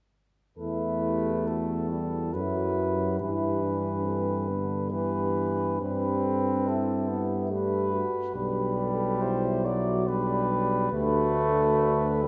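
Set in a triple metre with a rubato feel, this solemn, yearning hymn-like classical passage for brass band is cut from a longer piece, and all five parts sound together from 0.6 to 12.3 seconds. Up front, a mellow, close-miked cornet carries the melody with a soft attack, while a French horn section with a smooth top sings a tight second line in the background. A clear solo trombone and a dark, distant trombone section fill out the accompaniment, the section sitting roomy and further back. A close-miked tuba anchors the bass with a warm tone and light vibrato, also placed up front. Everything is heard from further back in a church space whose wet reverb lingers for about 2.3 seconds, lending the chords a devotional glow.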